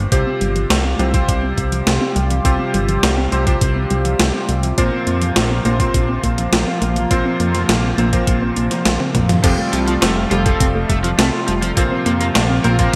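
Uplifting and romantic, this 103 BPM synthwave excerpt in F major pairs soft, round pluck arpeggios and clangy electric grand piano stabs with a fat, detuned analog bass and a shimmering pulse-width pad that pumps from sidechain compression under plate reverb. A thumpy overdriven electronic kick and an up-front gated 80s drum machine with snare, hi-hat, toms and crash drive the straight 4/4, and a drum fill at 9.0 seconds leads from Csus4 and Bbsus2 into a Fadd9 passage. There a bright, picked, cranked stack guitar enters at 9.4 seconds with a riff set back in the mix, all within a bright 1980s-style digital production.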